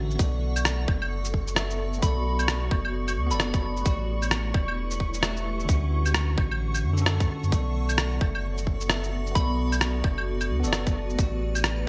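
Future garage with a rainy, ghostly mood and a swung 4/4 feel, where a bell-like tine electric piano with digital delay and a blurred, evolving granular cloud pad drift over Bm7, A7sus4 and Dmaj7 chords, all pumping against a deep, round sub bass and an overdriven, up-front electronic kick, while muffled, tape-tinged shaker, claves and rim click tick up front above a faint flickering grainy texture that enters at 1.0 seconds and a soft, pure synth bell with 12-bit grit that sounds briefly from 2.0 seconds, all set in bright 1980s-style digital production.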